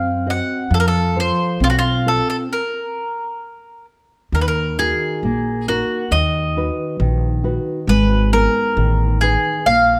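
A picked, double-strung mandolin sits up front with the melody, joined from the start by a dark, full-bodied nylon-string guitar thumb-plucking a deep classical accompaniment on old strings and a growly pizzicato upright bass, in a passionate, mournful fado-style ballad at 67 BPM in a rubato 2/4, where a stop from 2.5 to 4.3 seconds gives way to Eb minor and the woody trio rings in a moderate recital-hall reverb through this fragment of a longer piece.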